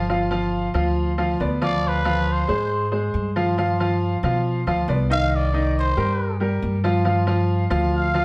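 Danceable and sultry, this short cut from a longer Cuban son and guajira piece moves at 138 BPM in a straight 4/4, with a clear concert grand piano rolling arpeggios over a woody, thumpy pizzicato upright bass on gut strings from the first moment. At 1.6 seconds a cup-muted trumpet joins with a veiled, raspy solo line, its soft attack, scooped notes, light vibrato and growling jazz inflections bathed in plate reverb. The harmony circles around G7, Dm7b5 and Cm7, and the whole group sits a little back in a wet studio room.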